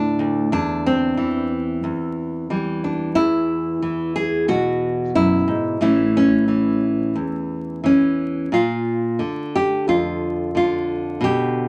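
The rhythm moves freely in a rubato 4/4, giving this short folk passage for solo fingerstyle guitar an intimate, haunting mood. A nylon-string guitar carries the whole piece alone, fingerpicked and placed up front, with a deep classical tone that reaches from D2 up to G#4. The harmony drifts from D5 through Cadd9/E and E to A, then settles on Bb at 8.5 seconds, a turn that deepens the unsettled feeling. A wet studio ambience surrounds the instrument, and a vinyl crackle adds a worn, aged texture. Lasting just 11.7 seconds, the passage is cut from a longer piece.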